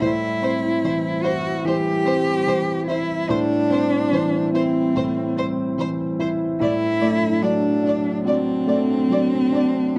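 An up-front, expressive solo cello with vibrato and portamento carries the second line beneath a smooth, bowed chamber violin section's melody, while a deep-bassed concert grand piano accompanies and a very quiet, warbly, detuned tape-like pad holds nostalgic lo-fi chords in this longing, fragile neoclassical piece for piano and strings, moving rubato at 73 BPM in A dorian from Am7 to D7/A in a dark production with moderate reverb, the violins dropping out at 9.6 s.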